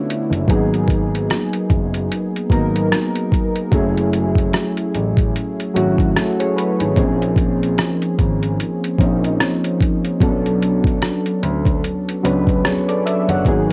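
A swung 74 BPM groove in 4/4 from an overdriven, muffled sampler-style drum kit with thumpy kick, hi-hat and rim click carries this melancholic, nostalgic lo-fi hip hop excerpt in Bb phrygian, where up-front warbling, detuned synth keys with chorus and cassette-tape character move through Abm9, Gbm9, Bbm9 and Bm9 chords while a dark, mellow concert grand piano plays the deep bass from 0.3 seconds, all in a light-reverb home cassette sound.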